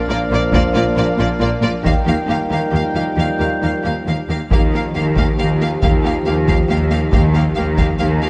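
This triumphant, adventurous cinematic orchestral cue in 3/4 opens on sustained chords from a mellow French horn section, a distant, roomy woodwind section and a tight trombone section in the background (the woodwinds and trombones stopping at 4.3 seconds), while a lush violin section carries the focused melody over a very quiet second violin line, a smooth, even viola accompaniment and a bass of cellos and distant double basses, all the strings bowed with vibrato, as a compressed, saturated taiko ensemble with heavy sticks enters at 0.5 seconds within a moderate scoring-stage reverb.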